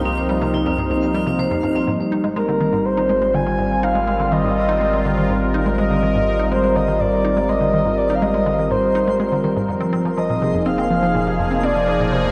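Cosmic and mysterious, this sequencer-driven space music opens on Cm with a bright, airy sawtooth pad sustaining evolving chords up front, a round, deep analog bass beneath, a hollow, bouncy square-wave pluck riff carried by chorus and tape echo, and a metallic vibraphone struck with hard mallets whose ringing arpeggios stop at 1.9 seconds. From there the harmony moves to Ab and later Fm as a sparkling granular texture fades in, twinkling in the background, and a breathy, flute-like synth lead enters at 2.4 seconds with tremolo, vibrato and echo. The mix is steeped in wet spring reverb and heavy echo, with lossy compression artefacts audible.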